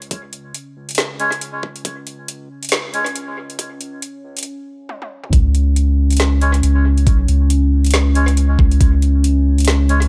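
A round, soft dub sub bass sits up front alongside a knocking, overdriven electronic kick in this cavernous, dark deep dubstep excerpt, which moves with a swung, half-time feel. A garage drum kit adds a woody snare, metallic hats and toms with overdrive and tape echo, while a moody analog pad with chorus and phaser holds sustained chords. Reedy, breathy melodica stabs enter at 1.2 s, and filter sweeps on the melodica and pad drive a build-up that breaks at 4.5 s before a drum fill leads into the drop at 5.3 s, all within an echo-heavy digital ambience.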